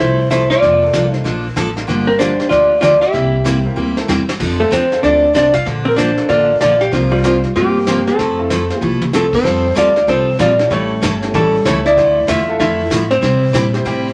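Heard through moderate studio reverb, this swinging, down-home western swing excerpt in F major moves at 190 BPM, with a dark, clean lap steel guitar up front carrying the slide melody over a hollow-body jazz guitar's compressed second line, a bright, jumbo picked steel-string acoustic guitar, a clear upright piano tucked in the background, a woody, thumpy pizzicato upright bass, and a vintage brush drum kit with a boomy kick and rolled-off top that enters at 0.3 seconds and adds fills at 3.8 and 8.8 seconds before the harmony turns toward A7 and Dmadd9.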